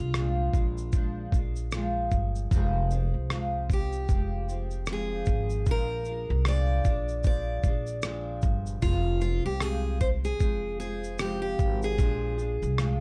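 Easy-going and sunny, this acoustic pop excerpt sways on a swung sixteenth feel as a bright, fresh-stringed picked steel-string guitar carries the melody over double-tracked, full-bodied fingerpicked nylon-string chords, both guitars touched with plate reverb, while a woody pizzicato upright bass and a gritty, compressed sampler-style drum kit of thumpy kick, rim click and shaker, entering at 0.1 s, sit up front in a dark production that moves between Bb7 and Fm.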